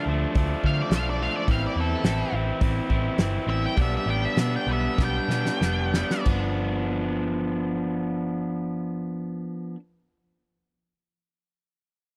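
A dark, fuzzy octave-fuzz lead guitar solos with slapback echo over a bright, up-front crunchy overdriven guitar riff, a round hollow-body short-scale picked electric bass and a loose indie drum kit with a fat snare and rolled-off top in this carefree, jangly indie rock excerpt in G mixolydian at 90-107 BPM, the solo slowing down from 1.5 s until a drum fill carries it to its end at 6.3 s, all captured dry and close in a small room with a 1970s studio character.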